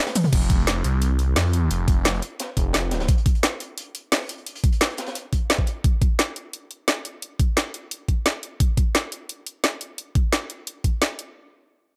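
Mechanical and dark, this dark technical drum and bass excerpt runs at 174 BPM in a straight 4/4, opening on a brief drum fill before an overdriven electronic kit with a woody snare, bright hats, crash, ride, shaker and toms drives up front alongside a knocking, layered electronic kick. Underneath, a crunchy breakbeat kit with a high-tuned snare sits gritty and rolled-off in the background until 5.8 s, while a swirling, thick detuned saw bass with phaser and saturation spans F1 to F2 before dropping out at 3.1 s. The mix is dry, with little reverb.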